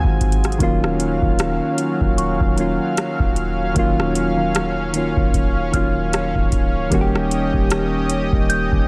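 Contemporary R&B at 76 BPM with a sensual, longing mood and a swung sixteenth feel, built on soft, round electric-piano-like synth keys with chorus up front and a lush, detuned, warbling unison pad that pumps against the sidechain, over a deep, clean 808-style bass and a booming, overdriven analog drum machine of deep kick, metallic hats and rim click, while a delicate, bell-like celesta with tape echo joins at 2.2 seconds over chords moving from Ab7 to Ebm9 and then to Eb7, all in a light reverb.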